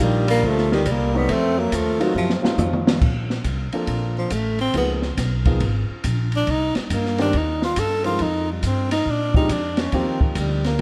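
A relaxed 139 BPM swing in 4/4 drives this sophisticated small-group bop fragment in Bb major, where a close-miked tenor saxophone with light vibrato and tape echo carries the melody, joined until 2.4 s by a second, breathy subtone tenor with scooped notes, over warm grand piano comping, a woody pizzicato upright bass and an up-front drum kit with dark cymbals and a boomy kick whose fill leads into the lead tenor's solo at 3.0 s, all set in a lush hall reverb within a rough home demo mix.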